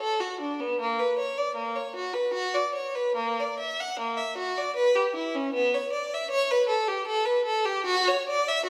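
A lone bowed violin opens this short fragment of a baroque-style suite movement, its clear, focused tone colored by vibrato as the line flows in a supple triple metre with rubato phrasing. The mood is flowing and radiant, and the single player sits up front while the wet reverb of a recital hall lends a distant halo. Tuned slightly below modern pitch, the solo carries on unaccompanied for all 8.7 seconds.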